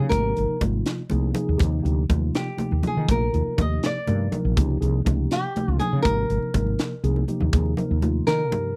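Soaring and funky, this short excerpt of electric jazz fusion moves at 81 BPM in a straight 6/8, counted in dotted quarters. A dark, fingerpicked flamenco guitar carries the melody up front with a slapback echo, while a mellow tine electric piano, clean and direct through a phaser, supplies the chords, moving from Abmaj9 through Ebadd9 and Dbmaj9 back to Abmaj9. Underneath, a woody fretless electric bass sits forward in the mix with a growly, round, punchy tone. A tight funk drum kit with a high-tuned snare and a rolled-off top drives the groove, joined by ringing, high-tuned congas played with soft hands in the background. A drum fill at 7.0 seconds opens the way for a nylon-string guitar solo at 7.5 seconds over an Ebsus4 chord, all captured in a dry, close 1970s-style studio sound.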